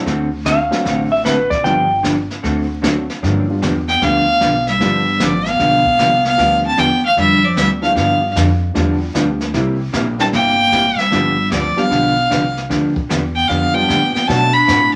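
Country western swing with a cheerful, swinging lilt, this excerpt opens with a woody, slightly detuned upright piano, a dark hollow-body jazz guitar, a thumpy pizzicato upright bass and a distant, roomy brush kit with a boomy kick and a gritty, vintage sampled edge carrying the accompaniment, while a clean, up-front lap steel line briefly slips in just after. At 3.9 seconds a biting, nasal fiddle takes the melody up front, shadowed in the background by a breathy clarinet with vibrato and scooped notes. Club reverb and vinyl crackle lend the whole a dance-hall patina.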